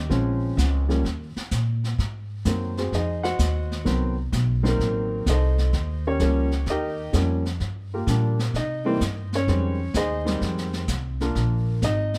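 Closely miked, detailed and nearly dry, this playful, relaxed jazz piano trio clip from a longer piece swings at 128 BPM in Eb mixolydian, with a natural, short-sustained baby grand piano soloing the melody up front from 0.0 seconds, a woody pizzicato upright bass on steel strings sitting just as close, and a natural small-room brush kit entering at 0.1 seconds with a medium-tuned snare, hi-hat and boomy kick.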